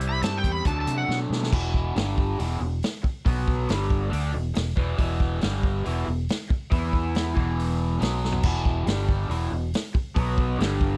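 A bright, double-tracked overdriven guitar sits up front with a phaser-tinged, picked riff in this brooding, gritty blues rock and southern rock excerpt, moving from C and D into a churning cycle of E5, G5 and B5 power chords. A brief overdriven slide guitar melody, warm in tone, appears only at the very start and ends by 1.2 seconds, while a round, punchy fingered electric bass and a natural vintage drum kit with dark cymbals and a rolled-off top drive a straight groove, marked by drum fills around 1.1 and 8.2 seconds. The sound is dry and close, with the feel of a 1970s studio room.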